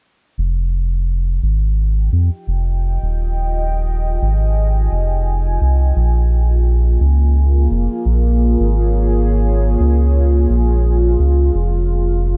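A round analog bass sits up front from 0.4 seconds, its sawtooth and sine tones giving a warm, dark low end with a fast attack and sustained notes in the Eb1 to F2 range. This excerpt of ambient dub moves at 86 BPM in 4/4 with a 16th-note swing, set in F minor and carrying a deep, spacious mood. At 2.3 seconds a moody ambient pad enters with sustained chords, its detuned unison sawtooths and sine sub octave swelling in slowly and lingering on a long release. Chorus and built-in reverb shade the pad, which sits well behind the bass, while a digital ambience surrounds the parts. The harmony moves from Fm7 to Bbm7 at 6.0 seconds and settles on Fm near the close.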